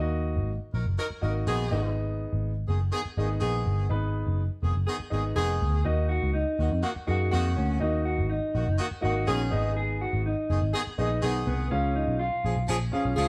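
Urgent and passionate, this 123 BPM soul fragment sets a round, foam-muted electric bass up front beside an intimate grand piano with audible action noise and deep lows, while a punchy horn section with vibrato enters at 0.7 s and a dark, clean, fingered electric guitar riff joins at 5.8 s, all moving through Ebm, Abm and Db in a moderately reverberant stone room where the band plays live together.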